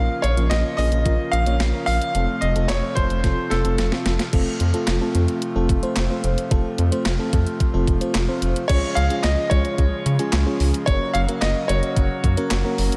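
A straight 4/4 synth-pop groove at 110 BPM, driven by an overdriven, clean 12-bit drum machine with a thumpy kick, medium-tuned snare, hi-hat, handclaps and crash, underpins this nocturnal, melancholic excerpt, with a drum fill from 3.2 to 4.3 seconds and a rubbery, bouncy square bass sitting up front. A dreamy FM electric piano with a soft pad layer, shimmering with chorus and tremolo, and thick foundation stops on pipe organ hold the harmony through Bbm, F, Db and Gb. A brilliant concert grand piano carries the melody in two phrases, from the start to 4.0 seconds and again from 8.7 seconds, all inside a lush hall reverb that gives a big arena sound.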